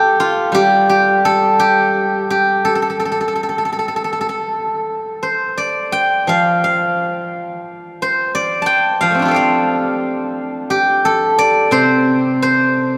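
Flowing in a free rubato around 80-91 BPM in 4/4, this Chinese traditional solo for steel-string zither carries a longing, contemplative mood across its 13 seconds, cut from a longer piece. The zither, played with fingerpicks and sitting up front, spans C3 to A5 with a silvery, ringing tone. A lush cathedral reverb lasting 5.1 seconds surrounds it with the spacious air of a church or concert hall.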